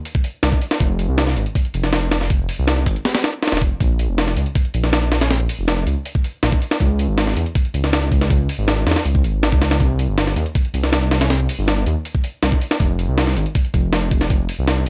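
A straight breakbeat of thumpy kick, high-tuned snare and hi-hat, sampled, compressed, pitched up and gritty with studio reverb, powers this dark, atmospheric drum and bass and jungle excerpt, joined at 0.4 seconds by a deep, rumbling detuned saw bass whose beating unison tone sits up front, with a layer of vinyl crackle across the recording.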